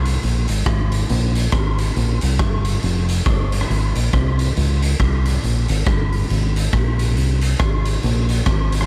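Ska groove at 138 BPM in Ab major, cheerful and upbeat, with a swung eighth-note feel in this short cut from a longer piece. A fingered electric bass, dark, round and up front, sits low in its register, while a raw garage drum kit of hi-hat, kick and rim click plays in a bright stone room that pumps, its punchy kick gritty and saturated with a rolled-off top. The sound is dry and coloured by vinyl crackle.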